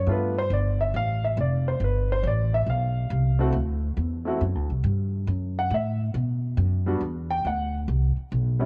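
Piano and upright bass start together at the opening of this short jazz clip, a relaxed small-group swing and bop piece at 138 BPM in 4/4 with a swung eighth-note feel. The concert grand plays accompaniment in a mid register, with an intimate, natural tone, deep low end and audible action noise, and carries a cassette-tape character. The upright bass is played pizzicato on steel strings, sounding woody and acoustic, and sits up front with the piano. The harmony moves through G9, D9 at 3.5 seconds, F#m7, B5 and Em7, all in a tuning a touch below standard pitch at A4 = 438 Hz. A small-room ambience and the worn grain of a home cassette recording, with lossy compression artefacts, give the warm, relaxed 8.7-second fragment a casual, lived-in feel.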